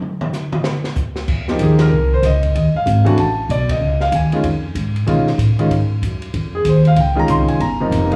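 A fast swung 4/4 at 190 BPM opens with a short drum solo on a small-room kit with dark, rolled-off cymbals, a medium-tuned snare and a punchy kick, before a woody, thumpy pizzicato upright bass enters up front at 1.3 seconds. At 1.5 seconds a clear concert grand with a deep low end and a slapback echo takes the melody in F minor, and the trio hits a pair of band accents over moody, extended harmonies such as Ebmadd9, Dbadd9 and a rootless Bbm11. This cool jazz trio excerpt sounds like a live club gig heard through the venue's PA, with light club reverb around it.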